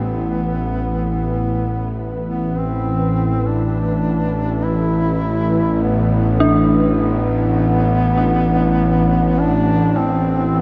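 Dark ambient drone at a slow 51 BPM in A minor, cavernous and ominous, where a bright, tense, string-like bowed drone sits up front on a low A under a filter sweep, a full-bodied, evolving sawtooth pad with a sub octave fades in from the background holding an Asus2 chord through chorus, a mellow folk-style duduk solo fades in with vibrato and scooped notes through shimmer reverb and delay, and from 6.4 s an eerie, inharmonic, warbling FM bell with a vintage, detuned tone adds arpeggios, the dreamy mix soaked in a lush hall reverb in this passage cut from a longer piece.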